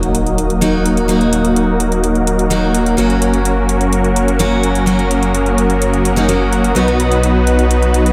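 A very quiet electronic impact opens this anthemic, euphoric festival progressive house excerpt at 127 BPM in F# major, where huge, up-front supersaw chords play a low-pass-filtered riff with dub echo and a filter sweep over a bright, picked jumbo acoustic guitar with its own dub echo, a thick detuned saw bass with chorus, a warbling vintage pad with chorus and a filter sweep sitting in the background, and metallic electronic hi-hats, as the harmony moves through D#m, F# and B in a lush hall reverb.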